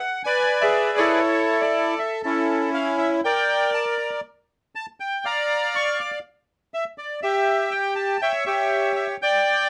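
Tango in D harmonic minor, this melancholic and dramatic fragment, cut from a longer piece, moves at 121 BPM in 4/4 with a rubato feel, tuned to A4 = 443 Hz. A solo bandoneon carries the whole passage from 0.0 to 9.7 seconds, ranging from C#4 up to D6. Its tone is reedy and warm, with a boxy, small-room character, and it sits up front in the mix. The harmony passes from E7 to A, then Bb and Dmmaj7, and after a chordless moment at 7.2 seconds it settles on C#dim/G at 8.2 seconds. Close, detailed microphones and light reverb keep the instrument's detail vivid.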